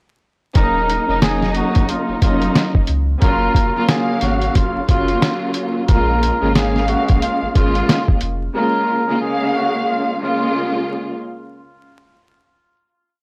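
A swung, boom-bap hip-hop groove in 4/4 sets a gritty, dark mood, driven by a lo-fi sampler-style drum kit whose thumpy kick, fat snare and hi-hat sit up front, compressed, pitched down and muffled with a tape-warm tone. Beneath it, a deep, round sine sub bass loops a sustained line with muted ghost notes, colored by transformer saturation. A lush bowed string section plays chopped chords repeated like a sampled loop, its vibrato and portamento expressive yet distant, passing from Ebm7 to Gbmaj7 to Bbm7 with a cassette-tape character. Over this, a cup-muted trumpet offers a short, jazz-style looping melody, soft and veiled with light vibrato and a breathy, smooth top. The drums and bass drop out around 8.4 seconds, leaving the strings and trumpet to close the piece by 11.2 seconds, all in a dry, gritty hardware sound flecked with vinyl crackle.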